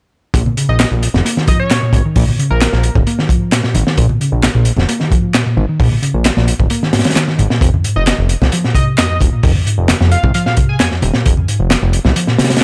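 Breakbeat in Bb minor at 132 BPM, this gritty, funky cut from a longer piece rides a straight 4/4 groove that holds a single section throughout. A crunchy breakbeat kit sits up front with a tight kick, medium-tuned snare and hi-hat, its saturated, rolled-off tone giving the beat a dark, small-room character, while layered electronic handclaps and very quiet, close congas add texture around it. Underneath, a fat analog bass with a detuned sawtooth edge and a wave-folded, filter-swept sustain carries the low end, joined by a round, amped hollow-body electric bass playing a picked riff. A punchy, catchy plucky unison lead states the melody from 0.7 to 3.0 seconds and returns at 8.0 seconds, its bright tone roughened by AM radio coloring, vintage 12-bit sampler grit and dub echo. The mix is dry, with little reverb, and the harmony moves from Bb to F.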